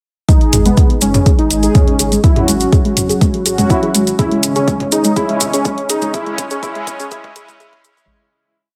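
A dark, dramatic melodic techno build at 123 BPM opens with an up-front four-on-the-floor electronic kick, a small-room deep house kit of closed hats and low toms, grainy close-miked maracas, a thick, nasal, detuned unison lead with vibrato and dub echo, soft round pluck arpeggios in a 3-step loop drifting against the bar, and brassy chorused pad stabs with tremolo, joined at 0.5 seconds by a menacing off-beat detuned saw bass, while filter sweeps run across the synths, sidechain pumping moves the lead, pluck, pad and bass, a drum fill begins at 4.2 seconds and a fade-out starts at 5.5 seconds.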